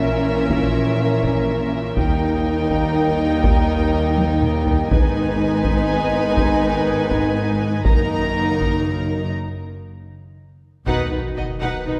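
Heard from further back in a wet concert hall, this relentless, dramatic excerpt of an epic orchestral film score in 6/8 sets lush, vibrato-rich violins on the melody over a second violin line and focused violas, while clear trombones and smooth-topped French horns hold sustained chords and intense cellos and woody double basses carry the bass beneath close, dry taiko struck with heavy sticks, with a drum fill at 4.2 seconds, a break at 9.4 seconds, and a huge, dark sub drop landing with the final impact at 10.9 seconds.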